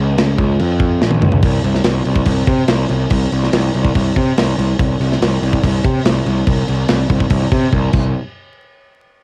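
A growly, fuzz-drenched picked electric bass opens this epic, aggressive heavy metal fragment, its bright overdriven tone pushed up front with tube saturation and a straight feel. A tight acoustic metal kit joins at 0.2 seconds, mid-forward with a rolled-off top and a cassette-tape haze, its tight kick, medium-tuned snare, toms and crash cymbal marking drum fills at 1.0 and 7.7 seconds. Light reverb and vinyl crackle give the whole cut the grainy character of a home cassette recording.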